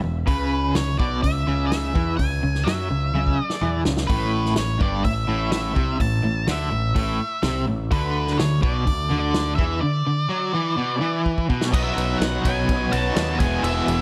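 A bright, crunchy overdriven guitar riff with tremolo drives this sunny classic rock excerpt at 126 BPM, alongside a round, growling picked bass up front, a dark octave-fuzz lead guitar and a vintage drum kit with a punchy kick, a rolled-off top and occasional fills. A second distorted electric guitar riff enters in the background at 4.1 seconds. At 11.7 seconds a new section begins where a very quiet tonewheel organ with key click and vibrato holds full chords beside a reedy, worn, slightly out-of-tune electric piano with fast tremolo, all set in a light small-room reverb.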